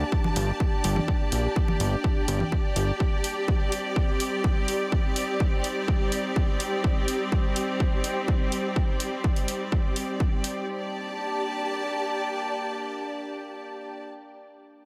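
Lightly reverberant and dark, this cinematic stretch of melodic techno in G minor at 125 BPM sets an up-front, overdriven electronic kick and layered, overdriven congas and hi-hat beneath a lush, close studio string section with vibrato and a mellow, morphing wavetable pad, both pumping with the sidechain, while a fat, detuned sawtooth bass with a filter sweep sounds only until 2.9 s and the kick drops out at 10.3 s, leaving strings and pad over the return to G minor.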